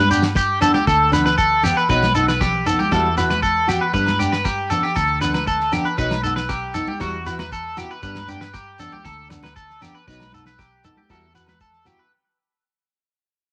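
Highlife guitar band music in G major with a joyful, carefree lift, moving at 117 BPM in a straight 4/4 and cycling through G, B and Emadd9 chords. Up front, a bright, twangy electric guitar at the edge of break-up plays picked arpeggios, colored by analog chorus, tape echo and cassette tape grit. A fingerpicked flamenco guitar, also run through cassette tape, supplies bright acoustic accompaniment underneath, while a dark, round, foam-muted electric bass gives punchy low support. A damped 70s drum kit with a fat snare and tight kick sounds dry and polished with a rolled-off top, and in the background a grainy, compressed shekere and high-tuned, thick-skinned congas fill out the percussion. Very quiet ringing agogo bells join at 4.1 seconds. The whole cut carries a moderate spring reverb and the homespun character of a cassette home recording, fading out across its twelve seconds as a slice of a longer piece.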